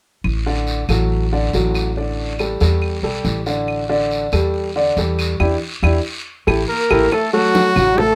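A thumpy, pizzicato upright bass opens this lively, sophisticated Afro-Cuban jazz excerpt at 140 BPM in D major, joined at once by woody claves and a raspy guiro, with a polished grand piano up front from 0.5 s. During a band accent, a punchy, forceful trumpet takes the melody at 6.7 s, as a veiled, bucket-muted trombone with vibrato and scooped notes sounds distant beneath it. Ringing congas and very quiet, round bongos enter at 7.1 s as a new section begins, set in light reverb.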